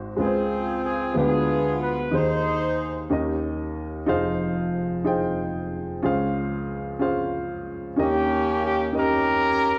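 Hopeful and jubilant, this short gospel passage in a slow 6/8 at 62 BPM sets a dark, natural-sounding baby grand piano up front through chords such as Dbmaj7, Ddim7, Eb7 and Fm7, while a tight, jazz-style horn section with a mellow tone, light vibrato and smooth top carries the melody from 0.2 to 3.1 seconds and returns at 8.0 seconds, all bathed in the wet reverb of a large studio.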